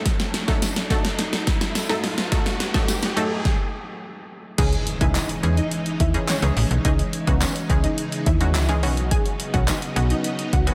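Dance-pop in C# minor at 106 BPM, confident and driving, opening on a build-up where a deep house drum kit with a deep kick and fat snare plays a fill over shimmering string-machine violins, punchy detuned chord stabs, a jingly tambourine and a riser, then stopping at 3.5 seconds before the drop at 4.6 seconds brings an impact, a snappy slap-like FM bass with a metallic attack and a lush wave-folded unison pluck melody with analog delay, all set in a dreamy, reverb-soaked cathedral space.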